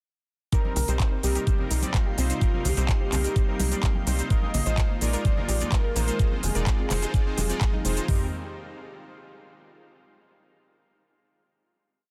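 Opening at 0.5 s straight into the drop, this dreamy, emotional progressive house piece at 127 BPM in C minor sets a velvety, wave-folded synth lead riff with vibrato and dub echo over pulsing gated supersaw chords, a mellow sixteenth-note pluck arpeggio over a pedal note, an up-front pop drum kit with a knocking four-on-the-floor kick and floor tom, a big-room kit of claps, crisp hats and shaker, background congas and bongos, and a punchy, nasal off-beat sequencer bass, with the lead, pluck, supersaw, bass and hand percussion pumping to the sidechain, while a lush slow-attack unison pad joins at 1.2 s and a faint glassy harmonics texture drifts overhead as the Cm7, Bb7sus4 and Fm7 progression comes to rest on a final Cm7 at 8.1 s in a dense, dry, heavily limited mix.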